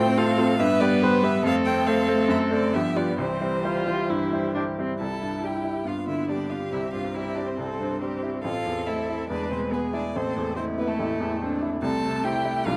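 This is a quick classical-period movement for piano quintet in C major, lively and cheerful, moving at 141 BPM in 4/4 with a rubato feel. A bright, brilliant baby grand piano sits up front with short sustain, providing accompaniment across its range from A1 to C5, while a viola, rich, smooth and even, adds accompaniment further in the background. A clear, focused violin carries the melody between A4 and A5 with vibrato, close and bowed by a single player. Beneath it, a rich second violin with a smooth top and a close, even cello each supply a second line, all strings played with vibrato throughout the 12.8 seconds. The harmony moves from F/A through G7 to C, then turns toward A minor with an E chord at 9.3 seconds, and the passage, cut from a longer piece, repeats its opening section at 5.0 seconds. A moderate large-studio reverb and a dark, warm production give the ensemble a roomy finish.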